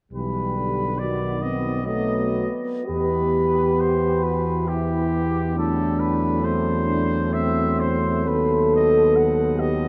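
In a slow, rubato 3/4 at 66 BPM with uneven beats, this yearning, melancholic hymn-like passage for brass band in E minor, cut from a longer piece, moves from Em/B and B7 through Em and F#m7b5/E to B/D#. A distant, roomy cornet carries the melody with vibrato and a punchy edge, while a dark French horn section with soft attack sings a second line and a mellow tuba sits up front on the bass. A clear solo trombone and a trombone section supply background accompaniment, the whole ensemble set in a vast, echoing cathedral with a 5.4-second reverb tail.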